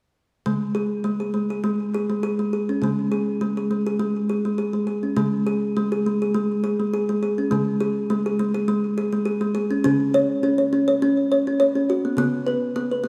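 A woody, boxy solo kalimba, thumb-plucked and up front with delay, drifts through a hypnotic, gentle world meditative excerpt in a lightly swung 4/4, ringing into a wet echo-chamber reverb before closing on a Bsus2/C# chord at 12.2 seconds.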